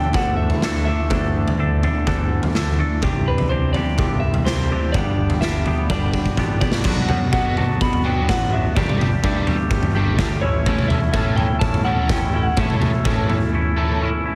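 A small-room, heavily compressed radio-style sound frames this jangly, upbeat indie rock excerpt in a straight 4/4, moving from Dsus2 through Cadd9, G, Bm, Gsus2 and A. A twangy, clean guitar plays a riff with lush chorus throughout, while a slightly broken-up guitar through a small old amp carries the high melody with slapback echo, over a raw garage drum kit that sits up front with a punchy kick, gritty saturation and a pumping stone-room sound, plus a growly overdriven picked bass in the background. After a drum fill, a biting overdriven guitar riff joins at 6.9 seconds, dressed in ensemble chorus and slapback echo.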